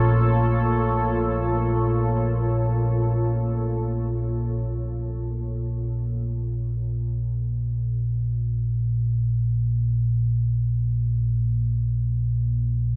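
A dark, ominous ambient piece in free time opens with a deep, rumbling drone and a moody, detuned sawtooth pad sustaining a Bb minor chord under a huge, wet reverb, and the pad stops at 4.7 s while the wave-folded drone, thickened by lush chorus, carries on alone until 13.0 s.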